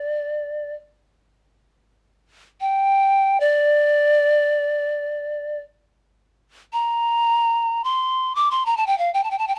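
A polished pan flute plays alone in free time through this soulful, hypnotic Turkish excerpt, its airy, woody tone shaded with vibrato and soft attacks, sitting close and up front in light reverb as one phrase at 0.0 seconds returns at 5.8 seconds, spanning D5 to D6.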